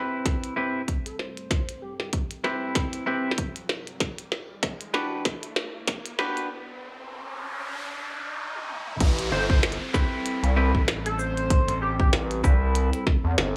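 Bright, clean semi-hollow electric guitar stabs open this playful, swaggering glitch hop excerpt, pumping against a deep, moody analog pad. A punchy, layered electronic kick and a glitchy kit with a tiny snare and clicky, tape-warm hats drive a build-up as an edgy, tearing sync lead flickers in briefly, the pad gets a filter sweep, and a riser and noise sweep lead through a break. At the drop at 9.0 seconds, a gritty, saturated synth bass takes hold, joined at 10.7 seconds by a punchy fingered electric bass while the lead returns with 12-bit sampler grit and delay.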